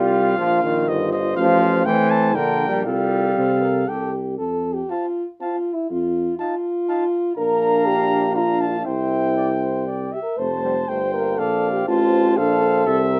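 Noble and triumphant, this brief fragment of a classical brass quintet unfolds in a rubato triple metre, with a smooth-topped trumpet carrying the melody over a warm, distant flugelhorn second line, while an up-front French horn and a clear, roomy trombone supply accompaniment and a vintage-toned tuba anchors the bass, all sounding throughout under light reverb as the music moves into a new section at 4.4 seconds.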